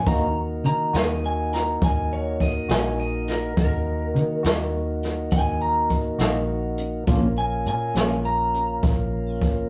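Up-front brushed drums with a boomy kick and a medium-tuned snare set a straight 12/8 slow-blues pulse at 68 BPM in this smoky, mournful excerpt, where a dark, round, foam-muted fingered bass anchors the low end and a clear tonewheel organ on a slow rotary speaker holds sustained chords under a clean guitar solo with harmonic tremolo, while a bright, slightly broken-up second guitar through a small old amp adds twangy, lo-fi lines as the harmony moves from Ebm to Bbm at 7.1 seconds, all inside a rough rehearsal-room sound with a wet reverb.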